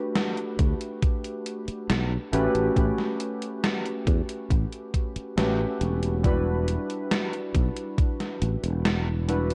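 Warbly, lo-fi synth keys open this vaporwave clip at 0.0 seconds, their detuned square, sawtooth and triangle tones carrying a wave-folded edge, a noise layer and a filter sweep, softened by subtle chorus and analog delay. A gated 80s digital drum machine joins at 0.2 seconds with hi-hat and a gated-reverb snare roughened by 12-bit sampler grit. At 0.6 seconds a thumpy electronic kick and a sustaining fretless electric bass arrive, the bass sounding bright, growly and punchy in its low register. The mood is woozy and nostalgic at a slow 69 BPM in a straight 4/4, with the harmony drifting from Gmaj9 to A13 and then Em9. Dark production with a cassette-tape character and light reverb gives the clip a hazy, faded feel, and it is cut from a longer piece.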